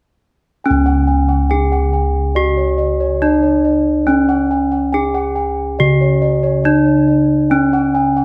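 Javanese gamelan in a shimmering, serene mood, cut from a longer piece, where bossed gongs sound round, beating arpeggios from 0.6 seconds, a bright, ringing bronze metallophone struck with a horn mallet carries the up-front melody, and lower bossed gongs lay down a dark, smooth bass, all set in a moderate recital hall reverb.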